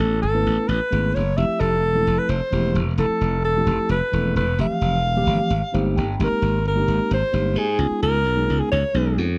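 A clear, up-front alto saxophone sings a jazz-style solo with vibrato and a soft attack over a punchy, growly glassy slap bass and a mellow tine electric piano, whose brief fill arrives at 5.5 seconds in this bright, funky electric jazz fusion passage in 7/8, set in a dark production with light reverb and plate reverb on the saxophone and piano.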